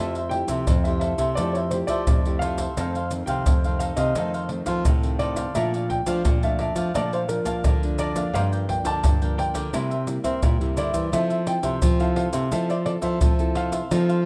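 A natural-sounding baby grand piano opens with a playful melody over a crisp, picked cavaquinho and two fingerpicked classical nylon-string guitars, one filling out the harmony and the other carrying the bass, in this lively samba and choro excerpt in F major at 86 BPM. From 0.2 seconds, maracas, pandeiro and a tight surdo join, sitting close, dry and up front, as the chords move from Fmaj9 through F7, Bbmaj7, Gm7 and C7 to Fmaj7. A light reverb gives the ensemble a sense of space.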